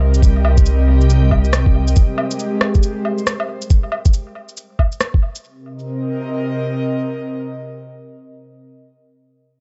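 Future garage fragment with a nocturnal, rainy mood, where a deep, rumbling detuned saw bass and a reversed, dreamy swelling texture open beneath an airy, breathy pad that pumps with the sidechain and sustains through 8.7 s, while a muffled, thumpy up-front kick and a tape-toned electronic shaker, woodblock and rim click, touched with analog delay, carry the swung groove until 5.4 s, set in an echo-heavy, lightly reverberant mix with dulled highs.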